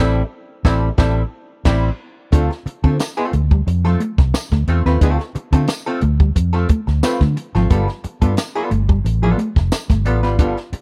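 At a straight, driving 89 BPM in 4/4, this hypnotic D dorian funk excerpt opens with a band accent as a hollow-body archtop guitar with wah and a round, foam-muted fingered bass play from the start, a compact cocktail kit with a high-tuned snare and dark cymbals joins at 0.6 seconds, a mellow clean guitar riff enters at 2.3 seconds, and a jingly tambourine adds sparkle, all in a dry, close 1970s-style small-room sound moving from Am7 to Dm7 and G9.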